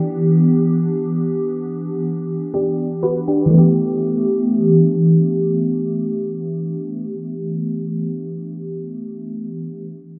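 R&B in free time and G major, this short fragment cut from a longer piece carries a tender, smooth mood. A single FM electric piano with a soft pad layer supplies the accompaniment across the full 10 seconds, sitting up front between E3 and B4. Its tone is lush and dreamy, with a detuned shimmer, a fast attack that decays, and a noise layer under the triangle-like core, colored by chorus, phaser and a low-pass filter. A filter sweep moves across the keys over the opening 3.5 seconds on an Em7 chord, before the harmony settles onto G69 at 3.5 seconds. The whole recording sounds as if heard muffled through a wall, wrapped in a moderate, lush hall reverb with a club-like ambience.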